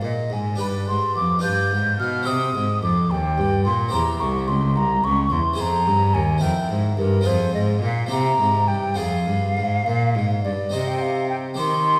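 Heard through the wet reverb of a recital hall with a 1.3-second tail, this solemn, introspective baroque-style sonata movement in 6/8 at 72 BPM, cut from a longer piece, turns from C minor to F minor at 3.9 s, with an airy, hollow silver concert flute carrying the tongued, vibrato-touched melody up front over a close, brilliant plucked harpsichord and a single reedy, gut-string cello bowing the bass line.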